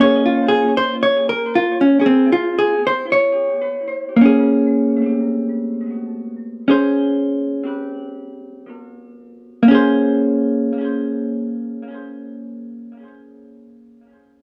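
A lone clean, compressed hollow-body electric guitar sits up front with tape echo, playing an intimate, melancholic swung jazz ballad that slows through its first 9.6 seconds and falls silent at 13.1 seconds, captured in a close, dry 1970s-style studio recording with a brief booth ambience and cut from a longer piece.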